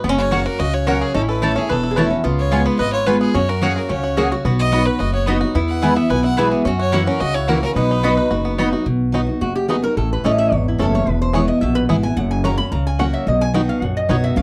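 A straight, driving 4/4 at 218 BPM carries this joyful, virtuosic bluegrass excerpt in B major, cut from a longer piece. The twangy, fingerpicked banjo and a clear, bowed fiddle with light vibrato share the melody, while a metallic, nasal lap resonator guitar plays slide as a second line above a full-bodied jumbo acoustic guitar and a thumpy, gut-strung upright bass sitting up front. A bright mandolin adds double-string stabs until the fiddle drops out at 8.5 seconds and the mandolin follows near 8.7 seconds. From 8.9 seconds the resonator guitar takes a steel-bar solo over chords moving through A, E, F# and B, with the banjo, acoustic guitar and bass continuing beneath it. The sound is dry and close, in the manner of a 1970s studio, with light reverb.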